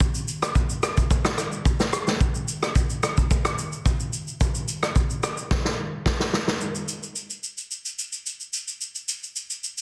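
Dense, heavily limited and lightly reverberant, this late-night, hypnotic amapiano clip at 109 BPM in straight 4/4 centres on a vintage acoustic drum kit placed up front in a studio room, its mid-forward, rolled-off sound built from a punchy kick, rim click, shaker and a medium-tuned snare with soft clipping, carrying a drop that closes with a drum fill from 5.5 to 6.6 seconds before a new section runs to 9.8 seconds.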